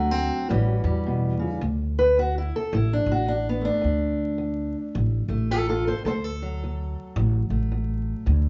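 The recording sounds like an old record: vinyl crackle sits under a muffled top end that stops at 7.6 kHz, and the duo plays live together in one large studio room with moderate reverb. This soulful, laid-back acoustic country blues excerpt is in D major at 108 BPM in 4/4, with swung eighth notes and tuning set to A4 = 441 Hz. A fingerpicked steel-string parlour guitar carries the melody, dark and boxy in tone and placed up front, ranging from D2 to C5. An upright bass with steel strings, played pizzicato, sits just as close, woody and warm in its low register from A1 to E2. The harmony moves from D7 to A7 before settling on D at 1.6 seconds, where the guitar takes a solo that runs to the end at 8.5 seconds.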